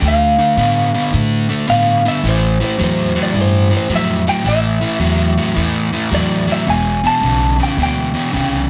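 A swung shuffle at 108 BPM in 4/4 underpins this brooding, mournful electric blues in A minor, heard as a short fragment of a longer piece. An overdriven semi-hollow guitar sits up front with a picked, hollow-bodied riff low in its range, its tone warm. Above it, a second electric guitar played through a small old amp carries the melody between C5 and A5, its picked notes slightly broken-up and compressed. An upright bass plays pizzicato underneath, woody and dark with steel strings, reaching down to E1. The harmony moves from Dm to A5 at 2.2 seconds and settles on Em7 at 6.7 seconds, while a light reverb gives the three parts a little space.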